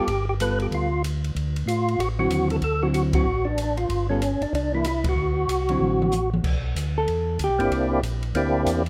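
A fat, lightly overdriven tonewheel organ with key click and third-harmonic percussion carries the melody up front, its slow rotary speaker, chorus vibrato and plate reverb giving this swinging, soulful soul jazz organ trio fragment its character. A round, mellow second organ, also slow-rotary and lightly overdriven, holds down the bass, while a clean, fingered hollow-body electric guitar comps and an acoustic drum kit with dark cymbals and a boomy kick swings underneath. The band hits accents at 3.1 and 5.0 seconds, and after a drum fill the guitar takes a solo at 6.4 seconds over rich extended chords.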